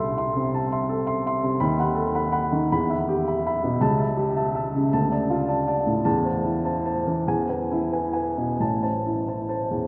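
A 6/8 pulse bends freely under rubato in this brooding, stormy romantic character piece for solo piano, a short passage cut from a longer work. An upright piano, woody, polished and up front, plays alone from start to finish across a range from deep bass to the upper treble, its minor-key harmony moving through a chain of chords before settling home at 8.6 seconds. A deep cathedral reverb with a long 4.8-second tail hangs around every phrase, giving the close, intimate instrument a vast, shadowy space.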